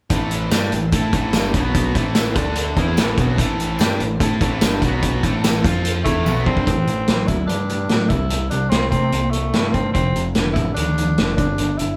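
Brooding and driving, this classic rock excerpt in A minor at 146 BPM sets two picked electric guitars, one distorted and one overdriven, on riffs over a growling, punchy overdriven bass and a gritty, saturated vintage drum kit up front, while a very quiet, shouting tonewheel organ with slow rotary speaker and key click holds sustained chords until 6.7 seconds and a jingly tambourine sits in the background, before a raspy tenor saxophone takes the melody from 6.0 seconds, just ahead of a drum fill at 6.3 seconds, as the band plays live in one room with moderate studio reverb.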